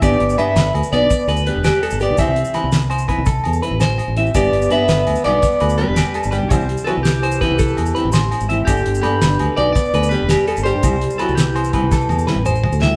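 Joyful and danceable, this highlife guitar band excerpt in a straight 12/8 rocks between two chords as a dark, slightly broken-up lead guitar with tremolo carries the melody, a bright, twangy second guitar through a phaser spins arpeggios, a raspy, growling tenor saxophone with scooped notes adds a jazzy second line, a clean guitar picks quietly in the background, and a round, up-front fingered bass joins a dry, fat-snared 70s drum kit, ringing agogo bells and grainy maracas in a reverberant live room, ending on a drum fill at 11.9 seconds.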